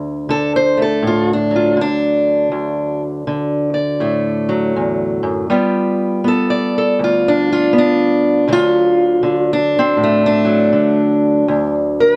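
A fingerpicked steel-string parlour guitar plays alone from the start, dark and boxy and set up front with light reverb, carrying a soulful, gritty acoustic country blues with a swung 4/4 feel as it moves from D to G7 at 5.5 seconds and D7 at 8.5 seconds in this short cut from a longer piece.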